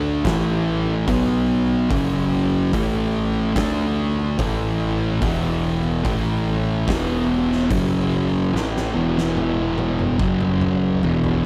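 A thick, double-tracked fuzz guitar sits up front with a distorted riff over power chords from A5 through B5, F#5, D5 and E5, alongside a bright, overdriven picked electric bass and an oversized low-tuned acoustic drum kit with a fat snare, punchy kick and gritty, pumping room sound, in a heavy, sludgy stoner and doom metal excerpt at 72 BPM that closes with a drum fill from 8.5 seconds.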